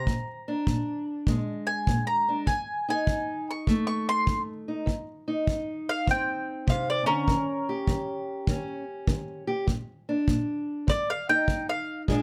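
A mellow, round mandolin and a dark, boxy fingerpicked parlour guitar open together on this soulful, laid-back acoustic country blues, with a punchy kick played with brushes joining at 0.1 seconds. Over a swung 4/4 feel, the picked double-string mandolin carries the melody up front while the guitar accompanies through dominant-seventh changes. The small-room drum and moderate studio ambience keep this short cut from a longer piece intimate.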